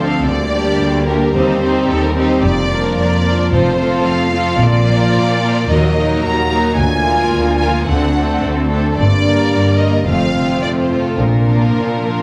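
Adventurous and soaring, this cinematic orchestral passage in Bb major moves at a straight 110 BPM in 4/4, cut from a longer piece. A lush violin section carries the focused, vibrato-rich melody up to Bb5, while a second violin line with a soft attack sings expressively beneath it, and a smooth viola section fills in accompaniment in the background. A clear, intense cello section anchors the bass alongside a woody double bass section, with a mellow French horn section holding tight sustained chords and a thumb-plucked concert harp adding ringing arpeggios. Soft-mallet timpani with a round tone enter very quietly at 2.4 s and fall away by 5.4 s. The harmony travels from Gm/D through a darkening Ebm and D7 before settling back on Bb, all bathed in the generous reverb of a recital hall.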